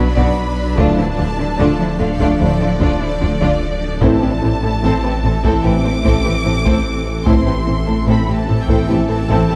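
Vast and brooding, this cinematic excerpt of a hybrid orchestral and electronic film score moves at a straight 74 BPM in A minor, with a lush violin section carrying the melody over a background second violin line, bowed violas, a distant cello section and a double bass section (which stops at 9.4 s), a thick detuned saw bass with chorus, a cloudy, evolving granular pad, a very quiet soft round pluck playing arpeggios, close and dry taiko struck with hard sticks entering at 0.2 s, and very quiet dark French horns and trombones holding sustained chords from 0.8 s, all within a moderate scoring-stage reverb and a dark production as the harmony passes from Bm through Dm to Am.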